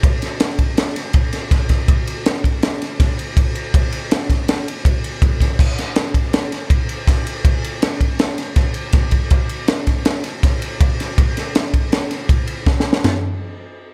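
Bright and playful, this short rock excerpt rides a lone, crisp fusion drum kit at 162 BPM in an odd 5/4 metre with a straight feel. Crash and ride cymbals, toms, a punchy kick and a high-tuned snare sit up front in a small, pumping acoustic room, with little reverb and a dark production. A drum fill at 12.7 seconds closes the 13-second passage.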